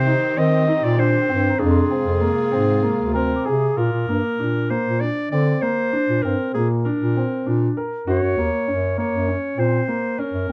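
Playful and shimmering, this contemporary chamber piece moves in a straight 7/8 at 196 BPM (eighths) in Bb mixolydian, with an up-front clarinet carrying the melody over a mellow, smooth-topped bass clarinet line and a dark, vintage baby grand piano rolling out arpeggios with long sustain. Muted, veiled strings played con sordino with vibrato hold sustained chords in the background until 3.8 s, while a delicate, bell-like celesta rings sweetly behind them from 1.3 s. The harmony shifts from Cm and Fm to Bb and then Gb in a dark, warm production with moderate studio reverb, cut from a longer piece.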